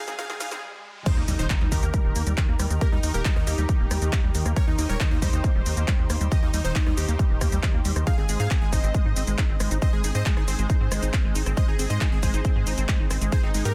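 A layered, up-front electronic kick drops in at 1.1 seconds after a brief build-up and a stop, driving this euphoric uplifting trance excerpt alongside a tape-warm analog drum machine with a punchy snare, claps, hats, rim click, shaker and crash, while a riser and impact sit in the background from 0.1 to 2.8 seconds. A tight sawtooth-and-square sequencer bass pumps underneath, with a squelchy, resonant acid bass running arpeggios through chorus and delay. Further back, an airy supersaw stab carries the melody over a catchy, full-bodied plucky unison lead and a lush, thick pad with vintage 12-bit sampler grit, all three pumping against the kick in a dense, heavily limited, dry mix.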